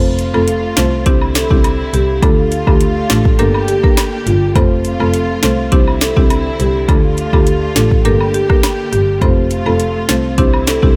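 This bouncy, sunny dancehall excerpt opens at once with a buzzing, woody marimba played with medium mallets on hardwood bars, a close, intimate studio string section holding soft-attacked bowed chords with vibrato and sidechain pumping, and a lone bowed double bass that sounds pure, floating and distant. At 0.2 seconds an electronic, produced afro-pop drum kit lands up front, with a deep kick, a sharp snare, rim clicks and metallic hi-hats. Cabasa and woodblock arrive at the same moment, tucked in the background with a vintage, band-limited acoustic tone. A second marimba, dry, full and close-miked, carries the melody from 0.3 seconds through a digital delay, sitting above the accompanying marimba. The harmony cycles through F, Cadd9, D minor and G minor in a steady, straight loop, all inside a small room ambience.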